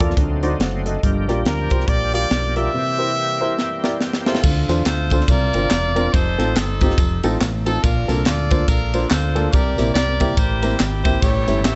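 Uplifting and hopeful, this short cut from an uptempo gospel piece swings at 141 BPM, with a round, dark fingered electric bass and a crisp fusion drum kit with a high-tuned snare and punchy kick driving under a natural baby grand piano, while a shouting, lightly overdriven tonewheel organ with key click, slow rotary speaker and chorus vibrato holds sustained chords at the start and returns briefly at the close. A brilliant, forceful trumpet with tape echo carries the melody from 1.5 to 4.0 seconds, and as a drum fill winds down, a tight, soft-attack saxophone section with light vibrato takes over at 4.3 seconds, joined by background tambourine, egg shaker and group handclaps. The sound sits in a small room with a softened top end.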